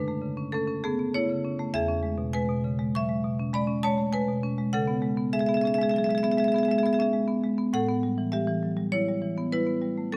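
Close, detailed microphones place the marimba up front on a moderately reverberant scoring stage, where a 1.7-second tail gives each struck note a sense of space. This is a contemporary classical piece for solo marimba, reflective and hypnotic in mood, moving at 100 BPM in a straight 5/4 metre and tuned to A4 = 444 Hz. The single instrument, played with medium hard mallets on rosewood bars, sounds woody and bright, with a crisp percussive attack. It covers a broad range from E2 up to C#6, reaching from deep low notes to high upper tones. Across this roughly ten-second fragment of a longer work, the harmony moves from F#m7 to E6 at 1.7 seconds, C#m7 at 4.7 seconds and A9 at 7.7 seconds.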